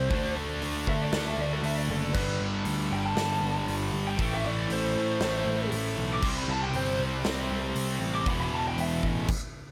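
A straight 4/4 hard rock groove at 118 BPM drives this aggressive, menacing fragment, with a big, natural-sounding acoustic kit of punchy kick, medium-tuned snare, hi-hat and crash, a fuzzed, overdriven picked bass, and two bright rhythm guitars, one a cranked stack and one tightly distorted, playing the riff over D, G5, Am, C5 and E5. Across the top, a dark, lo-fi lead guitar through a small cranked amp plays an overdriven solo with tape echo, set in light studio reverb. The lead drops out at 9.0 seconds, the bass and rhythm guitars stop at 9.3 and the drums at 9.4, leaving a brief stop to close the excerpt.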